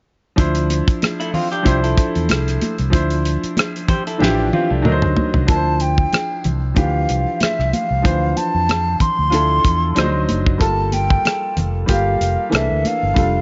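A lightly swung 94 BPM groove in 4/4 carries this bittersweet, silky stretch of lush 1970s-style soul in D minor, built on a dry, damped drum kit with a fat snare and tight kick, a dark, round fingered electric bass, a clear concert grand piano up front, and soft-handed congas set back in the mix. A slightly broken-up, lo-fi electric guitar riff through a small old amp plays from 1.2 to 5.0 seconds, and after a drum fill the breathy jazz flute takes the melody at 5.5 seconds, its vibrato and soft attack a little unsteady. Light reverb surrounds the band as the harmony moves from Dm9 and D7b9 to Gm9 and C13.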